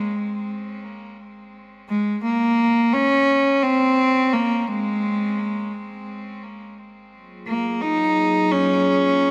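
A bowed, earthy cello with a biting edge plays an up-front melody with delay in free time, opening this playful, intricate IDM fragment in G-flat Lydian, before a warbling, nostalgic lo-fi pad with chorus slowly swells in at 7.4 s to hold a Gbmaj9 chord, all set in a lush hall reverb over a faint mains hum.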